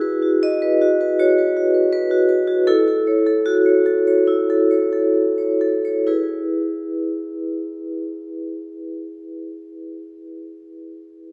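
Warm and playful, this short cut from a longer contemporary classical piece for solo vibraphone moves in a rubato 4/4 at 63-80 BPM in E major, tuned to A4 = 437 Hz, with medium hard mallets drawing a bright, metallic, ringing tone and a slow motor vibrato from the range E4 to D#5, slowing through the opening 6.1 seconds over Eadd9 and A6/E before settling on E, all heard from further back in a reverberant recital hall.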